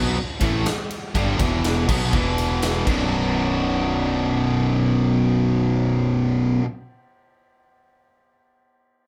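Heavy and driving, this short hard rock excerpt moves at 122 BPM in a straight 4/4 in B minor, sounding like a band playing live together in a small room with a moderate touch of reverb. Three picked electric guitars carry the riff from the start: an up-front overdriven guitar, a biting double-tracked overdriven guitar set further back, and a tight distorted guitar also sitting in the background, all of them bright. Beneath them, an overdriven fingered bass adds a growly, warm low end from B0 to B1, heard direct and amped. A big acoustic drum kit with a punchy kick, medium-tuned snare, ride and crash cymbals plays up front only from 0.4 to 3.0 seconds, its cymbals sparkling in a natural, roomy sound. The harmony moves through G5, E5 and B5 power chords before settling on B minor at 2.9 seconds, as the opening section gives way to a second one at 3.1 seconds, carried by guitars and bass until around 6.7 seconds.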